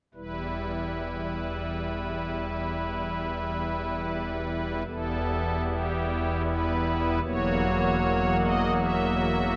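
Heard from further back in a cathedral, the sound is soaked in a long, wet reverb that lets each chord hang in the air. A solo pipe organ on its celeste string stops plays a solemn, dark chorale in a slow, straight 3/4, its soft, shimmering tone up front in a romantic voicing that reaches from deep bass notes to the upper register. Cut from a longer piece and tuned slightly low, the passage moves into a second section at 4.9 seconds, and its harmony shifts to a more unsettled chord at 7.2 seconds.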